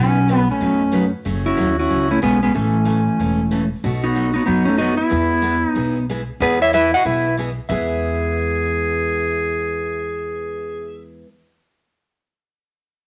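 Swinging and cheerful, this short western swing cut from a longer country piece bounces along in a lilting swung four. A dark-toned, clean electric lap steel carries the melody up front, its fingered slide lines shaded with volume swells. Beside it, a clear clarinet with a soft attack and a vintage, classical-style voice plays a second line, also sitting forward in the mix. Underneath, a bright, full-bodied dreadnought acoustic guitar picks out the accompaniment, with a touch of finger squeak, while a woody, thumpy pizzicato upright bass on gut strings anchors the low end. All four parts play together from the start until about 11 seconds, passing through a brief new section at 6.4 seconds under moderate studio reverb.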